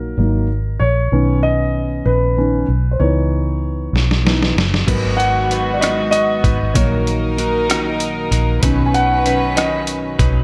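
Light digital reverb gives this dark, melancholic excerpt from a six-eight pop ballad a modest sense of space, with piano, bass and drums placed up front. Set in G# minor at 64 BPM in 6/8, it opens with a mellow concert grand carrying the accompaniment and a featured piano line over deep lows, while a round, foam-muted fingered electric bass plays beneath it. A gritty, pitched-down, sampler-style trip hop kit comes in at 4.0 seconds with a fill, and its thumpy kick, medium-tuned snare, rim click, hi-hat and crash cymbal give the second half a dramatic weight. At 4.9 seconds a distant, floating string section adds soft-attack, sul tasto bowed chords. A clean, direct-recorded electric guitar with a scooped tone also enters there, playing picked arpeggios. The harmony moves from D#m through Badd9 and C#m7 to G#m7, D#m/A# and back to Badd9.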